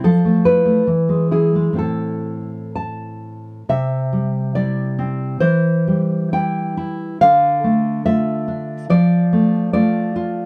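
Moving in a rubato 2/4 at 60-74 BPM, this intimate, wistful fragment of a romantic classical guitar piece features a solo nylon-string guitar, dark, full-bodied and up front with fresh strings, thumb-plucked notes and audible finger squeak across a range from A2 to A5, shifting from A minor through Fmaj7, E and Am to C major at 3.7 s before settling toward Dm and Dm/F, all captured by close, detailed microphones in a light reverb.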